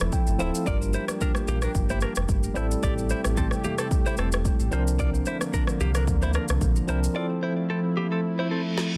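A produced, electronic afro-pop drum kit sits up front in this mellow, sultry afrobeats excerpt, its deep kick, woody snare, rim click and shaker carrying a gently swung groove. Beneath it, a full, sine-toned sub bass with an octave layer holds sustained notes until 7.1 seconds, while a clean tine electric piano, shimmering with medium tremolo through a combo amp, opens with a short fill. A smooth, detuned sawtooth pad with slow attack and chorus lays soft sustained chords underneath, and a direct-recorded electric guitar, picked and compressed, plays a riff colored by tape echo. Very quiet, high-tuned congas with a bright, thin-skinned snap add hand percussion until 6.9 seconds. The harmony moves from Fmaj7 through Gm7, Am7 and C9sus4 back to Fmaj7, and an electronic reverse cymbal enters at 8.4 seconds ahead of a closing drum fill, the mix sitting in light reverb with a dense, heavily limited modern master.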